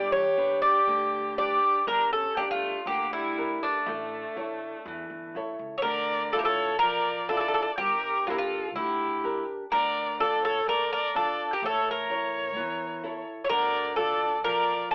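Brooding and cool, this Greek folk fragment for bouzouki band gathers speed throughout as a bright, metallic bouzouki with doubled strings carries the picked melody up front, a dark bowed violin adds an expressive second line with vibrato and portamento, a full-bodied nylon-string guitar fingerpicks the accompaniment, and a woody, thumpy pizzicato upright bass anchors the low end, all heard through a small room and a thin telephone-like filter.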